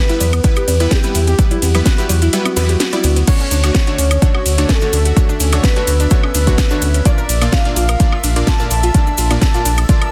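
A soft, round synth lead with chorus, phaser and delay opens this uplifting, expansive progressive house drop at 127 BPM in D major, shadowed by a very quiet, warbling FM bell and bright, detuned supersaw stabs, while a gentle pluck arpeggio, a house kit with a cracking snare and metallic hats, a grainy cabasa and background bongos and congas fall in, with the congas stopping at 3.1 seconds. A deep, overdriven kick and a dark, tube-saturated bass sit up front, the bass pumping with the sidechain, and the kick drops out from 2.3 to 3.3 seconds before the chords move from Em to Dmaj7 and Bb. From 4.4 seconds a dreamy, reversed granular texture rises in the background, and the dense, heavily limited mix carries light digital ambience.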